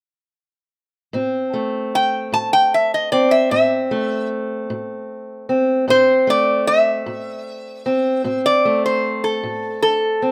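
A slow, straight 12/8 pulse at 51 beats per minute, counted in dotted quarters, carries this brooding, soulful acoustic country blues fragment in A minor, cut from a longer piece. A fingerpicked steel-string parlour guitar sets up the accompaniment from 1.1 seconds, sitting low between A2 and C4 with a dark, boxy tone that stays up front. At 2.0 seconds a lap resonator guitar enters with the melody, played with slide and fingerpicks high between A4 and A5, its metallic, nasal voice bright and forward, and slightly louder than the accompaniment. The whole passage rests on a single A minor chord, giving the duo a steady, introspective feel. Light reverb and a rough home-demo mix keep the sound intimate and unpolished, and both parts stop just past 10 seconds.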